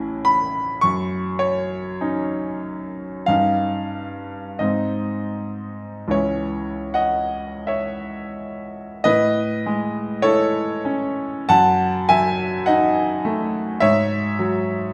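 A brilliant, vintage-toned grand piano sits up front in a mournful, yearning romantic nocturne excerpt, unfolding alone with free rubato in a slow 4/4 of roughly 34 to 54 BPM across a span from A1 to C#6, its shifting chords giving way at 9.0 s to an Amaj7 passage before settling on an open G#7 at 13.8 s, all bathed in the wet reverb of a recital hall.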